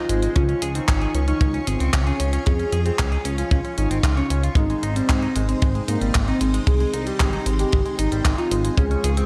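The production is dark and lightly reverberant, with a romantic, playful italo disco feel at 114 BPM in a straight 4/4, set in Ab major and cut from a longer piece. Up front, a kick drum with a tight, acoustic, mid-forward thump joins at 0.4 s, alongside a gated 80s digital drum machine whose handclaps and hi-hat carry a sampler-style, tape-warm gated reverb. A glossy, retro chorused synth bass drives the low end with plucky, pulse-width-modulated tones. Above it, a soft octave-layered synth lead sings a round, sustained melody with vibrato, coloured by chorus, phaser, delay and shimmer reverb. In the background, a lush, full-bodied string machine holds mellow chords with ensemble chorus, while a bright, twangy clean electric guitar, recorded direct, picks compressed arpeggios through spring reverb, delay and shimmer. The harmony moves from Db to Ab at 4.6 s.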